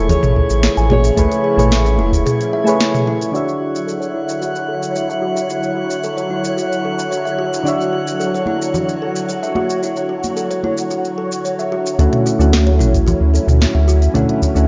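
Relaxed and warm, this sunset chillout cut from a longer piece moves at 111 BPM in a straight 4/4, shifting from Amaj7 to Dmaj9 at 3.3 seconds. Soft, warbling electric-piano-like synth keys and a silky string machine with phaser and ensemble chorus carry the harmony throughout, while a woody kalimba plays arpeggios through an analog delay, its filter sweeping through the middle stretch. A thumb-plucked nylon-string guitar with tape echo sketches a brief melody in the background at the opening, and a glassy texture of drifting overtones hovers high until 12.0 seconds. A round, up-front sub bass and a deep electronic kick appear at the start and return at 12.0 seconds, while a smooth, overdriven R&B kit with a sharp snare, crisp hats, shaker and toms keeps time throughout, and high-tuned congas played with soft hands ring in the background. The mix sits in a moderate digital stage reverb, yet the recording itself is dry and gritty, its top end dulled.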